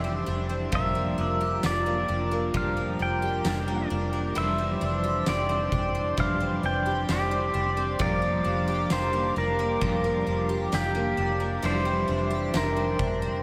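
A twangy, compressed pedal steel guitar played with fingerpicks and slide carries the melody with volume swells and delay in this blissful, dreamy dream pop excerpt, floating over shimmering, octave-doubled twelve-string acoustic guitar arpeggios with chorus and delay, a clean semi-hollow electric guitar with tremolo and chorus in the background, a soft, flute-like pad holding sustained chords, a round, foam-muted electric bass, and an oversized, low-tuned drum kit that enters at 0.7 s with boomy kick, fat snare, dark cymbals and tambourine, gritty and pumping in a big room, the whole mix set in light reverb.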